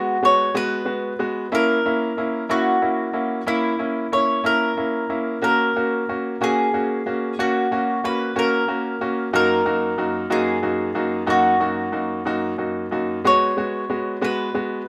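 A mandolin melody and a baby grand piano accompaniment open this melancholic, dramatic pop fragment together, swaying in 6/8 in a small, reverberant room with the rough feel of a home demo. The picked, woody double strings of the mandolin sit up front with a plate reverb, while the brilliant, intimate piano shows audible action noise and a short sustain as the harmony moves from G#m7 through A#dim, F# and D#m/F#. A brief new section arrives at 13.3 seconds on a return to G#m7 before the cut-off just under 15 seconds.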